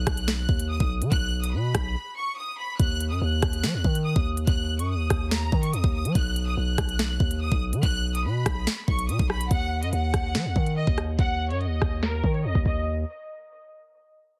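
Ominous and tense, this drill excerpt in Eb minor moves at 143 BPM with a half-time feel, cut from a longer piece and set in a digital ambience with a heavily compressed, low-pass-filtered radio sound. A bright, distant studio violin section carries the melody with light vibrato and a touch of delay, while a deep, sine-like 808-style bass with a fast attack and long decay sits up front beside an electronic drum kit of knocking kick, sharp snare, crisp hi-hats, rim clicks and crash cymbal. A break arrives at 2.0 seconds, and a filter sweep runs from 9.5 seconds until the parts stop near 13 seconds.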